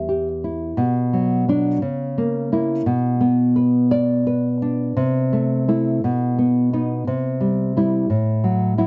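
A romantic solo classical guitar piece in 6/8 at a rubato 57 BPM, cut from a longer work and tuned to A4 = 438 Hz, where a sunny, nostalgic nylon-string guitar sits up front with a dark, full-bodied, thumb-plucked tone and audible finger squeak across E2 to E5, moving from Em through Bm, A#dim/C# and Am/C to F#m/A, in a dry, close 1970s-style studio sound touched by light reverb.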